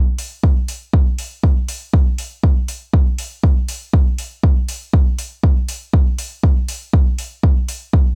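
A deep, tape-warm electronic kick drum sits up front, layered and re-recorded in a small room, driving this nocturnal, hazy techno excerpt with a lightly swung 4/4 feel. Metallic, overdriven electronic hi-hats sit far lower in the mix, entering at 0.2 seconds, while a digital ambience hangs around the drums throughout the roughly 8-second fragment.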